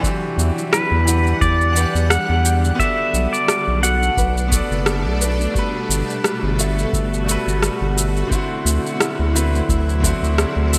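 Sunset chillout at 87 BPM in G major, smooth and relaxed with a light 16th-note swing, moving through Em9, Bm7, Gmaj9 and D9 in this short excerpt from a longer piece. A brilliant, open concert grand piano and an ethereal, detuned pad with chorus, phaser and octave-up shimmer reverb carry the harmony. A ringing, thumb-plucked harp plays arpeggios in the background, while a round, mellow analog bass enters at 0.4 s under an overdriven deep electronic kick and a layered shaker and rim click with gated reverb. An up-front, twangy pedal steel guitar with slide, delay and shimmer reverb sings the melody from 0.7 s to 5.2 s, all set in a lush 2.5-second hall reverb with bright 1980s-style digital production.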